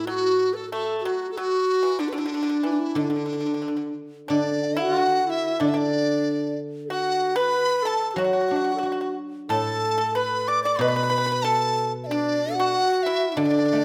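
A mellow, hollow large dizi leads this graceful, pastoral Chinese chamber piece, its bamboo tone carrying a buzzing membrane, crisp attack and vibrato as it sits up front across a range from D4 to D6. Beneath it, a bright, end-blown xiao traces an airy second line with a soft attack and expressive vibrato. The pipa adds another second line, its fingerpicked notes dry and percussive with a warm acoustic body. The guzheng supplies the accompaniment, its silvery, ringing strings also placed up front in the lower register. The music moves in rubato within a 2/4 metre, and the ensemble plays together throughout, shifting into a new section at 4.3 seconds. A wet recital hall reverb surrounds the group in this short passage cut from a longer work.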